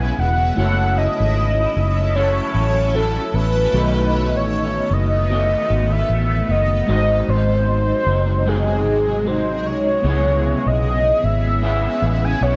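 Wistful and lonely, this short bedroom-pop excerpt drifts along at an easy, lightly swung pace. A velvety synth lead carries the melody up front over a round, punchy muted bass, while a slightly broken-up, twangy electric guitar adds accompaniment and warbling, nostalgic lo-fi synth keys fill in the background. A shimmering, ethereal pad holds sustained chords throughout, and the chords move from C#m7 through F#m7, B7 and G#7 before returning to C#m7 at 10.0 seconds.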